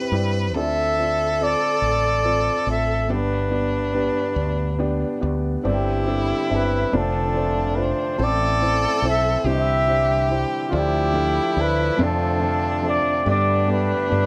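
Acoustic folk-pop ballad in a slow 6/8 at 47 BPM, heartfelt and hopeful, in which a breathy, whispered flugelhorn with light vibrato carries the jazz-tinged melody over a rich, smooth bowed violin second line, soft felt-muted upright piano with audible action noise, and a dark, round fretless electric bass sitting up front, while a reedy hand-pumped harmonium adds sustained chords in the background from 5.6 s, all under light reverb.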